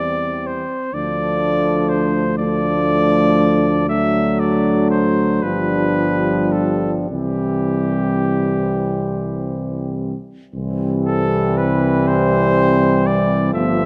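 Lyrical and serene, this hymn-like classical passage for brass band is cut from a longer piece and moves in an unhurried 6/8 at about 34-43 BPM, counted in dotted quarters, with a freely breathing rubato in C major. A clear flugelhorn sings the melody up front, while a tight French horn section with a warm tone and light vibrato carries a second line in the background. A close-miked trombone and a vintage-toned euphonium, the latter heard further back, fill in the accompaniment, and a mellow tuba with a light vibrato and smooth top anchors the bass. The harmony moves from C/E through Dm, D and G7 before settling on C at 7.1 s, and the music shifts into a new section at 10.5 s. The band sits in a recital hall whose reverb lingers for about 1.8 seconds, giving the sound a gentle, spacious glow.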